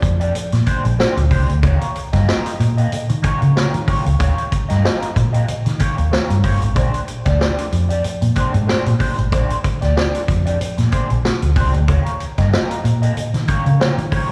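A round, foam-muted electric bass sits up front in this gritty funk excerpt, playing with a swung sixteenth-note feel over chords moving between Bb13 and Eb9. A saturated vintage drum kit with a tight kick, medium-tuned snare and hi-hat backs it. A slightly broken-up, lo-fi electric guitar through a small old amp adds accompaniment with wah and slapback echo, all heard as a live gig through the venue's PA, with recital-hall reverb and small-room ambience.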